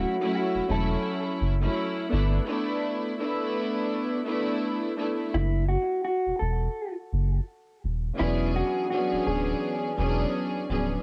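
A deep, round dub sub bass sits up front in this reflective, dark boom-bap hip-hop piece, its soft triangle-and-square-wave tone striking with a fast attack and then sustaining beneath the harmony. Around it, a rich studio string section floats with a pure, bowed ensemble sound and soft attack, carrying the accompaniment through a cassette-tape coloring shaped by high- and low-pass filtering. A clean, compressed electric guitar, played with the fingers and dark in tone, carries the melody through analog delay and filtering before falling silent at 9.8 seconds. The swung groove moves from a rootless Dmaj7 and G69 to D#m and E13, with a break opening at 2.5 seconds. Light reverb and the hazy character of a home cassette recording lend this short cut from a longer piece an intimate, lo-fi feel.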